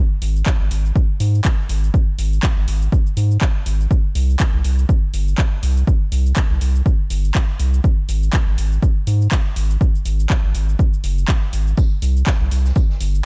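Dark, warm small-room production frames this late-night deep house fragment, cut from a longer piece and riding a swung sixteenth-note groove. A round, nasal analog bass with sidechain pumping sits up front beside a punchy, overdriven electronic kick, while a layered house kit of handclaps, bright hats and shaker adds gritty sparkle. From 11.8 seconds, a tambourine and a medium-tuned acoustic snare with a rolled-off top slip in far in the background.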